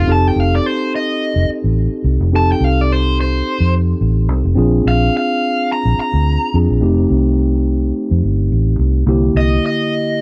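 A gritty, laid-back soul blues groove opens with all three parts together: a bright, overdriven electric guitar carrying the melody high up, a mellow tine electric piano filling in the harmony beneath it, and a dark, round fingered electric bass with a foam-muted, punchy tone sitting up front. Set in F mixolydian at 107 BPM in 4/4, the straight-eighth feel carries a light swing on the sixteenths that keeps it relaxed. The picked guitar line has a raw, overdriven edge, while the clean, direct electric piano offers a softer cushion of chords. The harmony moves from F9 to Bb9 at 4.6 seconds, back to F9, and lands on C9 at 9.1 seconds. The bass drops out at 9.6 seconds, leaving guitar and electric piano to finish this brief excerpt at 10.2 seconds. The sound is dry and close, in the manner of a 1970s studio recording, with little reverb around the instruments.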